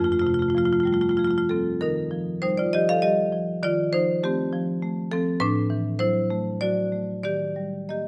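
A close, detailed recording places a solo marimba up front in a moderate stone-room reverb, its rosewood bars struck with medium hard mallets for a woody, bright and percussive tone that spans F2 to F5. This contemporary classical piece in 3/4 moves with uneven beats and rubato, giving it a flowing, playful character. Across this brief 8.1-second cut from a longer work, the harmony drifts through Fadd9, Ebadd9, Fadd9/Eb, Am6 and Ebmaj7.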